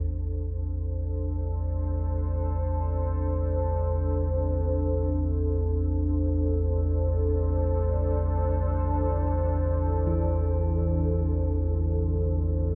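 Vast and ominous, this dark ambient drone unfolds in free time, a short passage cut from a longer piece and steeped in a wet, echo-heavy chamber reverb. A deep, rumbling drone anchors the low end throughout, its nasal, detuned tone carrying a ring-modulated edge with slow attacks and long releases. Above it, a moody pad holds sustained chords from start to finish, its evolving unison layers softened by chorus into a mellow haze that sits up front beside the drone. A bronze singing bowl rings faintly in the background, sounding at the very start and returning from 10.1 seconds to the end with a smooth, metallic shimmer and slow beating. The harmony rests on a single A minor chord, letting the layered sustain and long echoes fill the space with a heavy, brooding stillness.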